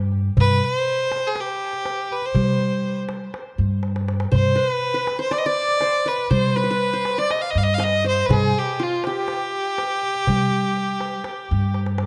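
A woody, thumpy upright bass opens this hypnotic, soulful Arabic maqam ensemble piece, plucked pizzicato up front, and a darbuka of clay shell and natural skin, played with soft hands in a live room, joins a moment later. A single bowed violin, nasal and smooth with vibrato and a touch of tape echo, carries the melody up front from 0.4 seconds. A bright-edged, plectrum-plucked qanun with triple strings adds a second line from 4.3 seconds, just after a darbuka fill, all captured by close, detailed microphones with light reverb.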